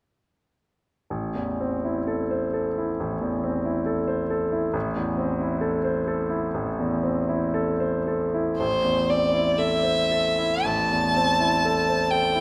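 A moderate concert hall reverb surrounds this yearning, melancholic romantic classical duo, heard as a fragment of a longer piece in a free, rubato 4/4. A bright, polished grand piano with a deep bass opens the accompaniment alone at 1.1 seconds, and at 8.6 seconds a single bowed violin enters up front with the melody, its rich, smooth tone carried by vibrato in a higher register over the piano.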